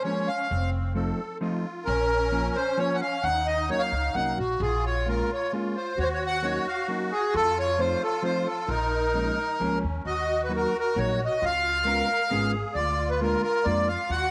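A musette waltz in 3/4 at 132 BPM, this nostalgic, bittersweet piece sits in Bb minor before moving to Eb minor at 10.1 seconds, and it is heard as a short cut from a longer performance. The lead accordion carries the melody up front, its reedy voice marked by a slow beating. Beneath it, a second musette accordion plays a close, dry, full line with the shimmering wet tuning typical of the style. A clean, dark hollow-body electric guitar, played with the fingers, supplies the accompaniment, and a woody, thumpy pizzicato upright bass with steel strings joins at 0.5 seconds. The harmony moves through minor sevenths and dominant chords such as Ebm7 and F7, and the piece is bathed in a wet spring reverb with a 2.3-second decay.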